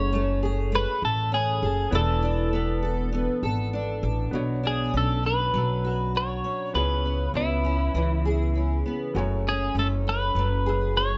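A lightly swung 4/4 groove at 100 BPM carries this easy-going, heartfelt acoustic pop excerpt, moving through F#madd9, E7sus4, Bmadd9 and C#m7 chords. Up front, a clean, compressed twelve-string electric guitar plays the melody with plate reverb and digital delay, alongside a double-tracked fingerpicked steel-string acoustic guitar with audible finger squeak and a woody pizzicato upright bass. Behind them, a clear, polished upright piano with short sustain sits in the background, all in a lightly reverberant room with a soft, rolled-off top end.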